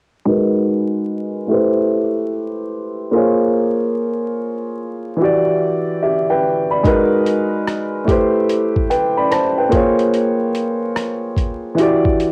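A hazy, melancholic lo-fi hip hop excerpt opens at 0.3 seconds with an upright piano alone, its woody, open tone carrying long sustain and sitting up front through a low-pass filter and cassette tape colouring, while a filter sweep shapes the piano during the first passage. At a slow 73 BPM in 4/4 with a swung sixteenth-note feel, the piano moves through minor seventh chords, G#m7, Am7, A#m7 and Em7, in an accompanying role spanning E3 to B5. At 6.8 seconds a boom bap sampler-style drum kit enters with hi-hat, rim click and a thumpy kick, sounding compressed, pitched down and gritty, and sitting lower in level than the piano. The same chord cycle repeats over the drums until the fragment cuts off at 12.3 seconds. A moderate small-room reverb, vinyl crackle and the tape-soaked character of a home cassette recording give the whole piece a dusty, intimate atmosphere.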